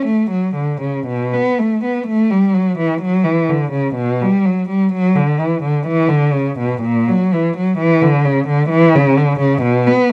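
A rich, bowed cello sounds from the very start, playing alone in an introspective, grave baroque-style suite movement in B minor, set in a slow 3/4 at 64 BPM with a freely rubato feel. The single player sits up front, shaping expressive lines between A#2 and B3 with vibrato and portamento, and a new section begins at 1.1 seconds. A moderate studio ambience surrounds the dark, warm production of this short cut from a longer piece.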